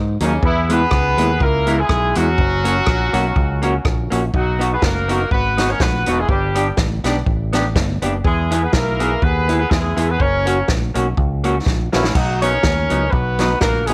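Ska at 123 BPM in B major with a light swing, this upbeat, bouncy passage cut from a longer piece puts a tight, clear horn section up front on the melody with octave doubling and light vibrato, over a round, dark fingered electric bass, a clean hollow-body jazz guitar in accompaniment, and a natural-sounding swinging big-band drum kit with a punchy kick and medium-tuned snare that plays a fill at 11.7 seconds, set in small room ambience with light reverb.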